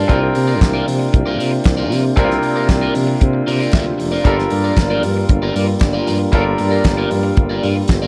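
A straight 4/4 disco groove from a dry, up-front, damped 70s drum kit with gated reverb, a fat snare, tight kick, hi-hat and handclaps drives this joyful, danceable snippet, as a punchy tuba with light vibrato carries the bass, a brilliant concert grand piano and a slightly broken-up, picked electric guitar with phaser supply the accompaniment, and a dark, soft-attack French horn section holds sustained chords in the background over a C9sus4 to Gm7 change, set in a studio reverb.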